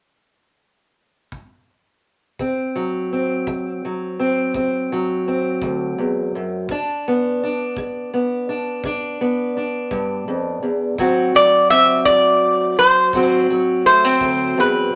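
Acoustic country blues in a laid-back, rollicking 12/8 at 56 BPM in D mixolydian, this excerpt opens on a tight, airy kick drum at 1.3 s, adds a dark, boxy fingerpicked parlour steel-string guitar up front moving from D7 to G and back, and brings in a bright, nasal metal-body resonator slide guitar played with fingerpicks for the melody at 11.4 s, all set in a small, wet room.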